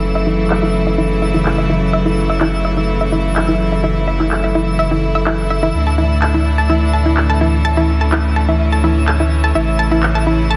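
A straight 4/4 groove at 126 BPM drives this bittersweet progressive house excerpt in F# minor, carried by low-passed, tape-tinged electronic cabasa and handclaps under a thick, saturated sub bass that sits up front. A bright, earthy chamber string section holds close, bowed chords through F#m7, Dsus2 and A, while a round, detuned analog pluck enters at 0.2 seconds with chorused, delayed arpeggios that move through a filter sweep. High above, a twinkling granular texture adds sparkling octave-up shimmer, and the whole mix sits in a moderate concert hall reverb.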